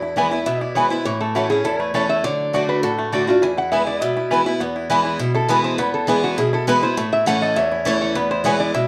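Bluegrass in E mixolydian at a brisk 203 BPM, joyful and lively, with a twangy fingerpicked banjo carrying the melody alongside a nasal, metallic lap resonator guitar played with slide that joins at 0.5 s. A boxy parlour steel-string guitar sits up front picking the accompaniment, finger squeak and all, while a woody double-strung mandolin adds stabs touched with slapback echo over chords moving from E through A and D. The dark, warm production sets the parts in a large studio room, and this short passage is cut from a longer piece.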